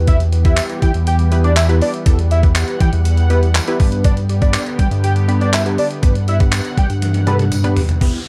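Carefree and summery, this dance-pop drop opens on an Em to G change, with a glossy, pulse-width-modulated synth bass and a thumpy, sampler-style drum machine of kick, hi-hat, handclaps and toms sitting up front, while a jingly tambourine rings distantly in the background. A punchy, warbling polysynth comp and a lush, thick unison pad pump against the beat under chorus and plate reverb, and a fat, nasal analog lead with vibrato carries the melody through plate reverb and delay. The drums play a fill from 7.0 seconds, and an electronic downlifter arrives at 8.0 seconds in a dark production with little reverb.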